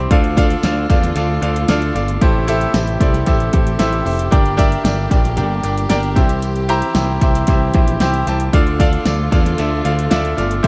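A clear, up-front concert grand piano, growly picked electric bass and lush, softly bowed symphonic strings open this earnest, driving piano-led pop excerpt at 114 BPM in straight 4/4, with a punchy, overdriven pop drum kit of fat snare, metallic hats and kick joining at 0.1 s and a jingly tambourine tucked into the background from 0.4 s. The harmony moves through Dm, Am7, Gm and C before returning to Dm, with the piano's deep bass and short sustain carrying the accompaniment while the vibrato-laden string ensemble holds sustained chords behind it. The production is dark and warm, set in a digital ambience.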